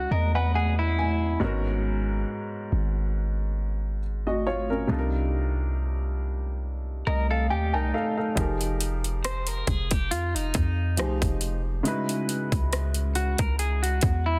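A deep, boomy 808-style bass with a sine-like tone sits up front in this moody, sensual contemporary R&B excerpt, its fast attack decaying into a mellow low end beneath a slow 69 BPM groove in 4/4 with a light sixteenth-note swing. An intimate baby grand piano carries the accompaniment throughout, natural and short in sustain, with audible action noise and occasional fills. A clean, compressed semi-hollow electric guitar plays fingered arpeggios through lush chorus and tape echo, dropping out at 1.4 seconds and returning at 7.1 seconds. An electronic trap kit with a hard-clipped kick, metallic hats and rim clicks arrives at 8.4 seconds, overdriven and pushed forward. The harmony moves through rich minor eleventh chords, Dbm11, Abm11, Cm11 and Fm11, tuned to A4 = 438 Hz and set in digital ambience with a dense, heavily limited modern master.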